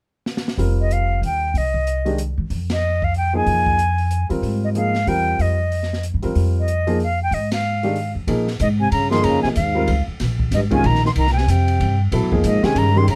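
A swung waltz feel in three drives this hypnotic, spiritual modal jazz passage, cut from a longer piece: an acoustic drum kit with dark cymbals, a medium-tuned snare and a boomy kick opens with a short fill, while a woody, thumpy pizzicato upright bass sits up front and a clear, polished piano comps over a sustained Fm11, with the full band striking an accent at 2.7 s. Above them a breathy, bright concert flute carries the melody in a reedy, tongued straight tone, close and present. The harmony moves to Bb7sus4 at 8.3 s, and at 8.6 s a mellow, whispered trombone with light vibrato enters as an intimate second line beneath the flute, all captured with close, detailed microphones in a dry room.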